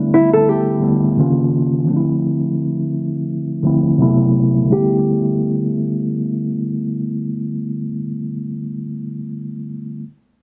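Swung sixteenths at a relaxed 85 BPM in 4/4 carry this short, nostalgic and cosy lo-fi hip hop excerpt in G mixolydian, where a small, fingerpicked nylon-string guitar sits up front with a low-pass filtered melody until 7.9 seconds over a mellow, clean tine electric piano that plays through built-in speakers with cassette-tape colour and its own low-pass filter until 10.1 seconds, moving from G6 through Eb5, Dm7 and Am69/C back to G6 at 4.7 seconds, with a filter sweep over the opening stretch and a gritty, dry hardware sound touched by light small-room reverb.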